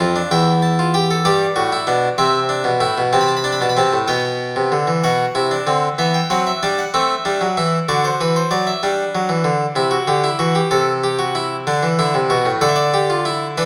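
A wet recital-hall reverb surrounds a nasal, bright French-style harpsichord placed up front in this short cut from a contemplative, serious baroque-style fugue in three parts. The solo harpsichord moves at 63 beats per minute in a straight 6/8, counted in dotted quarters, and spans E2 to B5, with the instrument tuned to A4 = 441 Hz. The harmony opens around E minor and G, then shifts at 5.0 seconds into a new passage that travels through Bm, Em7, Am and D before settling on Dmadd9.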